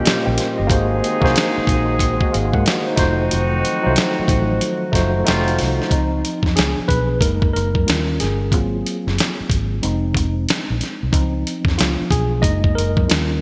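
Bright, 1980s-style digital production and a lush hall reverb give this smooth, relaxed neo-soul R&B excerpt in Db major its sheen, moving at 92 BPM with a swung sixteenth feel. Up front, a gritty, compressed sampler-style drum kit with a thumpy kick and fat snare sits in gated reverb over a dark, round, foam-muted fingered bass. A worn, slightly out-of-tune tine electric piano with light overdrive plays alongside a very quiet, flute-like tonewheel organ through a slow rotary speaker and a smooth-topped horn section firing stabs through digital delay; the horns drop away at 5.6 seconds and the organ at 5.9 seconds, when the electric piano takes a solo over rich chords such as Dbmaj9, Db7b9 and Ab13 to the close.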